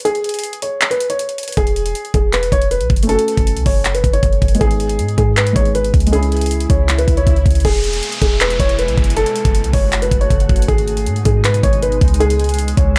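Dreamy and wistful, this short cut from a longer trap-style hip hop track moves at 158 BPM in a half-time feel, set in E major and cycling through E, F#m, G#m and C#m. A dark, boxy concert grand piano carries the melody up front from the start, joined by an electronic trap kit with a knocking kick, metallic hi-hats and handclaps. The clean, sine-like 808-style bass enters at 1.6 seconds, deep and boomy with a fast attack that decays into the low end. A soft, felt-muted upright piano adds intimate, short-sustained accompaniment in the middle of the passage, while an electronic swell rises and a downlifter falls behind the mix around the section change. From 8.0 seconds a glassy, ethereal FM pad with slow attack, ensemble chorus and its own reverb holds sustained chords beneath the piano, though the overall recording stays dry and close.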